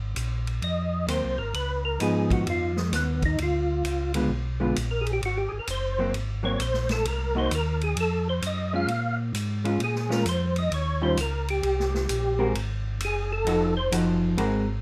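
A short, mellow cut from a longer soul jazz organ trio swings with soulful ease, as a round tonewheel organ with key click and slow rotary speaker carries the bass line, a percussive tonewheel organ with third-harmonic percussion and chorus vibrato takes the solo melody, a clean, dark hollow-body electric guitar comps up front, and an acoustic big-room drum kit with dark cymbals, a punchy kick and a medium-tuned snare swings underneath, all in light reverb with a faint mains hum.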